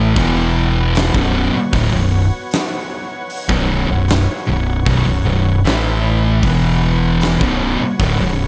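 Stoner and doom metal with an ominous, sludgy mood, as two thick fuzz guitars play a distorted, picked riff over a growling, overdriven fingered electric bass and a big rock drum kit with a fat snare and tight kick, while a gritty tonewheel organ with chorus vibrato sustains chords in the background, the dry mix moving through E5, Bm and A5 across this short excerpt.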